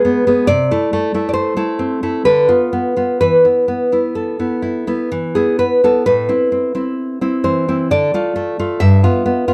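The rhythm moves in a flexible three-beat lilt, with uneven beats and a rubato pull that lets each phrase breathe freely. This is a romantic piece for solo classical guitar, intimate and melancholic in mood, cut from a longer work. A single fingerpicked nylon-string guitar carries everything from 0.0 to 9.5 seconds, its full-bodied, deep tone sitting up front and spanning a range from G2 to E5. The harmony drifts from Am/C through Bdim/D to a bare E5 at 3.2 seconds, then settles on Am before moving to Dm and closing on G7 at 8.8 seconds. Light reverb and a dark, warm production give the instrument a close, sombre glow.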